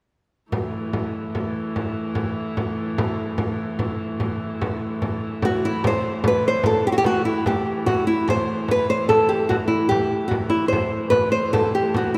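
Ancient and mysterious, this medieval dance in triple time opens on a rich, nasal hurdy-gurdy drone that sits distant in the mix beside an up-front frame drum, both sounding from 0.5 seconds. At 5.5 seconds a small, fingerpicked nylon-string guitar steps forward with the melody, the loudest voice through to 12.2 seconds. A wet concert hall reverb gives the whole excerpt the resonant air of a church.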